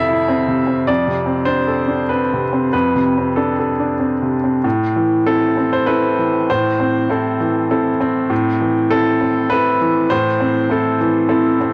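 Intimate and reflective, this short excerpt of neoclassical minimalist piano unfolds in A minor at 99 BPM in 3/4, played with a rubato feel. A lone baby grand carries the music from start to finish, its clear, natural tone sitting up front with long sustain and audible action noise that brings the listener close to the instrument. The playing ranges from F2 to F5, opening on an Fmaj7 chord that moves to Dm7/F at 0.9 seconds before settling onto A minor at 4.6 seconds, where the opening idea returns. Light reverb surrounds the piano, and the home recording on cassette lends the sound a modest, personal character. The fragment ends at 11.7 seconds, cut from a longer piece.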